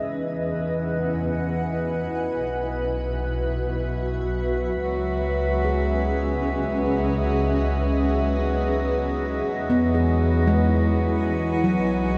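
Ambient piece in 3/4 at 76 BPM, serene and reflective, set in a cathedral-like reverb with a long 6.9-second tail and cut from a longer work. A dark, blurred granular cloud pad sustains Emaj7, Bsus4 and C#m7 chords with shimmer reverb, over a smooth, bowed double bass section with gentle vibrato. A reedy, breathing harmonium drone enters at 4.8 seconds, and at 5.6 seconds a ringing nitrided-steel handpan adds meditative fingertip arpeggios wrapped in diffuse delay and shimmer.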